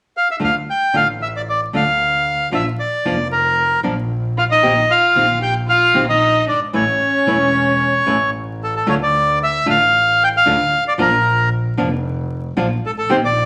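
A reedy, bright bandoneon carries the melody up front in this melancholic, dramatic rubato tango, cut from a longer piece, over fingerpicked, full-bodied nylon-string guitar and a close, earthy bowed double bass with light vibrato, while a warm violin adds an expressive second line with portamento from 4.4 to 8.3 seconds, all set in wet studio reverb with vinyl crackle.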